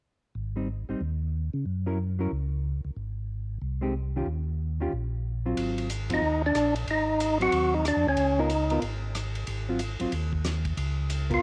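This soulful, bluesy soul jazz organ trio excerpt opens with a mellow, round tonewheel organ carrying the bass line through a slow rotary speaker and chorus vibrato, joined almost at once by a clean, dark hollow-body jazz guitar comping chords up front. The tempo is a brisk 184 BPM in 4/4 with a swung eighth-note feel, moving through Abmaj7, Gb7 and Ebsus2 harmony in Ab major before shifting to Ab mixolydian. At 5.6 seconds an acoustic soul drum kit enters with a fat snare, tight kick, dark cymbals and a rolled-off top, and the harmony turns to Ab13 and Db13 colours. A band accent at 6.1 seconds launches a second, percussive tonewheel organ on the melody, lightly overdriven with key click, third harmonic percussion and a fast rotary speaker, sitting loudest in the mix in a compact range. Light studio reverb gives the trio a small-room intimacy as the passage cuts off mid-phrase.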